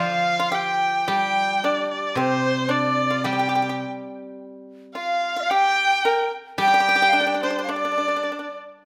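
Graceful and tender, this brief clip of Chinese traditional chamber music moves in a rubato 2/4 around 103-113 BPM, with a clear, focused erhu carrying the bowed melody up front with vibrato and portamento, a breathy, buzzing bamboo dizi tracing a second line in the background alongside a dry, percussive pipa, and a mellow, silvery steel-string zither ringing beneath them in a moderate recital hall.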